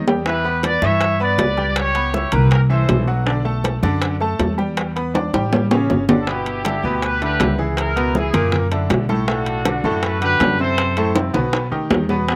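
A straight 4/4 salsa groove at 160 BPM drives this short, joyful clip cut from a longer piece, with drum fills at the very start, from 5.1 to 6.3 seconds, and again near the close. The upright bass sits up front with a woody, thumpy pizzicato tone, while close, dry timbales ring out with a metallic edge and congas and bongos fill in further back, the bongos tight, high-tuned and soft-handed. A brilliant grand piano carries the accompaniment across a broad range, intimate and present enough that its action noise can be heard, its notes sustaining long. The trumpet section takes the melody in two statements, one in the opening seconds and one from 6.2 to 11.1 seconds, sounding punchy and tight with a vintage, vibrato-laced pop-style sheen. Harmony moves through jazzy seventh chords, with a move from A7 to G6 marking the second section and a Baug chord at the end, all heard dry and sunny in an open-air setting with little reverb.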